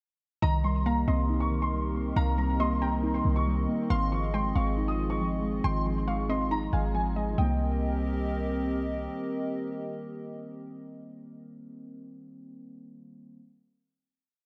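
At 0.4 seconds this hard-hitting, eerie hip hop piece opens with every part at once in a half-time feel: a grand piano plays a mellow, looping melody with long sustain, repeated like a sampled loop and colored by analog chorus and tape echo. Underneath, a clean 808-style bass holds deep, boomy sine notes of long sub-bass up front, while muted, felt-like synth keys run an intimate rising arpeggio in eighths, also up front and treated with chorus. A hollow pad sustains airy, flute-like chords with a slow attack and long release, and a soft, round pluck adds a sparse counter-melody in the background, shaped by a filter sweep and carrying chorus and tape echo. The harmony moves from Cm7 to Ab6 before returning to Cm7 for a final chord, as the piano and pluck stop at 8.6 seconds and the keys linger until 13.4 seconds. A moderate plate reverb soaks the whole piece, giving it a dreamy atmosphere.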